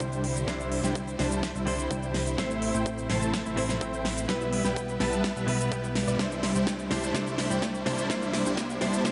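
A huge, detuned supersaw riff sits up front in this anthemic, euphoric festival progressive house build-up at 126 BPM in C major, pumping to the sidechain under a filter sweep and analog delay while a drum fill runs throughout. Underneath, a fat analog bass, a clean, picked electric guitar with its own delay and a lush bowed string section carry chords moving from Cadd9 through Am and Em/B, joined by a crisp-hatted big-room kit with a huge snare and a punchy kick in the background. A very quiet riser enters at 3.0 s, and the whole excerpt is soaked in dreamy hall reverb.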